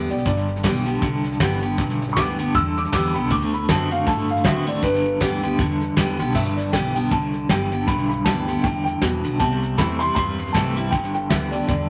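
A moderately roomy studio sound frames this rowdy, upbeat swung rockabilly cut, taken from a longer piece. A dark, boxy upright piano carries the melody and takes a solo through the first section until 6.4 seconds, over a bright, jumbo-bodied picked steel-string acoustic guitar, a woody, thumpy pizzicato upright bass on gut strings, and a soft brush kit with a fat snare, tight kick and dark cymbals. Just after the start, an up-front, twangy electric guitar at the edge of break-up joins with a tremolo-washed riff, and the harmony moves from G to D7 and back, then to C before settling back on G.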